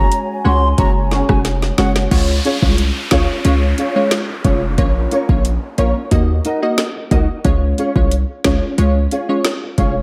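A hard-hitting, punchy 808-style bass underpins this sultry, hypnotic dancehall excerpt at 90 BPM, joined by an overdriven afro-pop drum kit with deep kick and woody snare that fills from 1.4 to 2.1 seconds, crisp detuned wavetable chord stabs with sidechain pumping, a thumb-plucked flamenco guitar arpeggiating in the background through chorus and delay, a bright baroque flute melody and a hollow flute ensemble that both drop out by 2.1 seconds, and an electronic downlifter, all moving through Gbsus2, Db, Bbm and Ebm in a dreamy, reverb-soaked mix.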